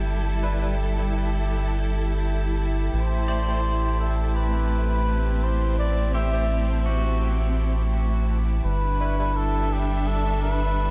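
A cup-muted trumpet carries the melody from 2.9 s, its soft, veiled tone delivered in a classical style as a solo voice trailing dub echo. This short ambient excerpt has a deep, meditative mood, built over a rich symphonic string section that holds lush, bowed chords with vibrato and a smooth top. Beneath it, a round analog bass sits up front, dark and sustained, blending sawtooth and sine tones. In the background, a reedy, nasal melodica adds stabs coloured by vintage 12-bit sampler grit and dub echo, while a clean electric pedal steel guitar, played with fingerpicks and volume swells, traces echoing arpeggios from 3.3 s to 9.0 s. A glassy texture of drifting overtones hovers quietly throughout with chorus and its own reverb, and the harmony moves from G5 to Am7 before settling on G6 at 8.6 s, all within a moderate spring reverb and small room ambience.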